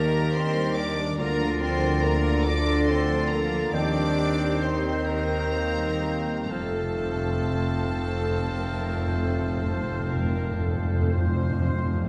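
Classical slow romantic movement for symphony orchestra in a rubato 12/8 at 38-48 BPM, serene and lyrical, where a warm, intimate chamber violin section sings the sul tasto melody amid second lines from a bright clarinet, a distant oboe, a clear studio violin section and a hollow flute, while a rich viola section, bassoon, soft-attack French horn chords, ringing thumb-plucked harp arpeggios, a mellow tuba, double basses and a very quiet cello section fill out the harmony over Ebmaj7, Bb/D, Cm/Eb and F, with hard-mallet timpani entering at 6.5 seconds, all inside a dark production with a 2.0-second scoring stage reverb.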